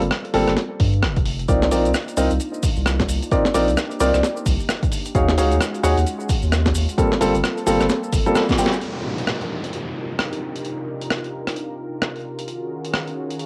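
A skippy, soulful two-step garage passage opens on a deep, saturated sine sub bass and a gritty, compressed sampler-style breakbeat kit of hi-hat, rim click and snare. Soon after come worn, up-front baby grand piano stabs through a low-pass filter and analog delay, a dry, punchy electronic kick, a smooth, detuned sawtooth pad with chorus and sidechain pumping, and faint, grainy maracas, all over a swung groove and shifting minor eleventh chords. After a drum fill and a band accent, the bass, piano, kick and maracas have all dropped away by 8.8 seconds, leaving the tape-coloured breakbeat kit and pad beneath an up-front electronic downlifter, all heard in a small room with a home-cassette character.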